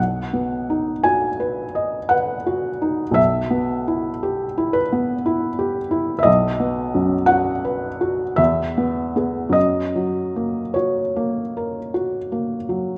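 Romantic classical nocturne for solo felt-muted upright piano in B major, slow and rubato in 3/4 at around 49-60 BPM, its dreamy, nostalgic mood carried by a soft, mellow, intimate tone with short sustain and audible action noise, placed up front in a moderate recital-hall reverb as the harmony moves from B through Em/B back to B, then to E and F# by 9.6 seconds in this brief cut from a longer piece.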